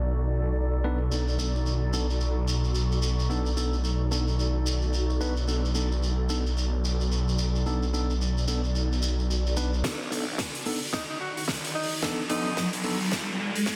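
Swung 16ths at 110 BPM in 4/4 drive this gritty, playful glitch hop excerpt, where a swirling, thick detuned saw bass with phaser sits up front beneath a cloudy, evolving granular pad and sidechain-pumped tine electric piano stabs with tape echo, while a grainy, distant shekere plays until 9.8 seconds, when a tight, layered electronic kick and an oversized low-tuned kit with a fat, saturated snare and hi-hat arrive in a drum-fill build-up, a clear, close-miked tenor saxophone plays a brief jazz-style solo with vibrato and 12-bit grit from 10.9 seconds, and an electronic riser enters at 11.4 seconds, all under a dense, heavily limited master.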